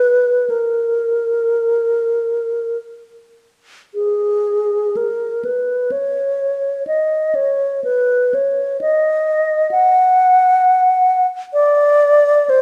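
A close-miked alto flute sits up front in a moderate recital hall reverb, its pure, mellow tone carrying vibrato and tongued notes between G#4 and F#5. This short classical excerpt for unaccompanied alto flute moves freely and expressively in rubato 4/4 at roughly 48-68 BPM, settling into F# major from 3.9 s. The mood is lonely and mournful throughout its 12.6 seconds.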